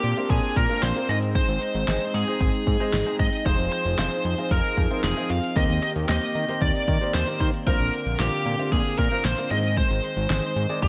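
An overdriven, biting electric lead guitar carries the melody up front with delay through this wistful, nostalgic synth-pop excerpt at 114 BPM in 4/4, over a clear, smooth concert grand piano and a brassy, detuned analog pad with chorus tucked in the background, a fat sawtooth bass with a filter sweep, and a layered deep house drum kit with a deep kick, fat snare and metallic hats, all moving through Bbadd9, Ab, Fm7 and Eb6 in a bright 1980s-style digital production with light reverb.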